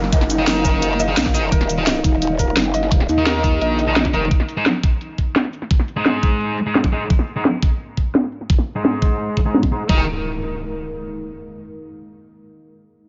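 This is a dark, technical drum and bass excerpt in Eb minor at 172 BPM, straight 4/4, with a mechanical, tense mood and a tuning slightly above standard at A4 = 445 Hz. A knocking, tape-warm electronic kick sits up front with a cracking snare, hi-hat and cabasa from the layered kit, whose hats, snare and percussion pass through low-pass filters under a filter sweep. An aggressive, wobbling growl bass with a saturated, formant-filtered edge and chorus drives the low end until 4.3 seconds, then returns briefly at 9.9 seconds. In the background, a deep, moody pad of detuned, wave-folded sawtooth and sine layers holds sustained chords with a slow attack, chorus and sidechain pumping. A soft, felt-muted upright piano plays intimate arpeggios with dub echo until 4.2 seconds, while a bright, thick fuzz guitar stabs through with distortion, dub echo and its own filter sweep over chords moving from Ebmadd9 to Absus2. 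A downlifter and impact frame the passage, with the final impact landing on Ebsus2 in a light, digital ambience with a subdued top end.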